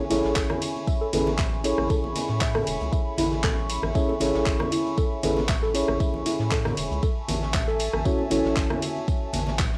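Sunny and relaxed, this deep house cut rides a gently swung groove under a home-cassette haze with light reverb, as a hollow, flute-like pad holds sustained chords and a mellow FM electric piano drops round, full-bodied stabs while a soft pluck arpeggiates in the background, all three softened by chorus and sidechain pumping. Underneath, a dark, wave-folded analog bass sits beside an up-front, overdriven electronic kick that enters at 0.4 seconds, joined by a layered house kit of handclaps, hi-hat, ride and rim click, a very quiet brushed jazz kit with tambourine, and distant, ringing congas played with soft hands. The harmony rests on Amaj7 before shifting to F#m7/A at 7.0 seconds.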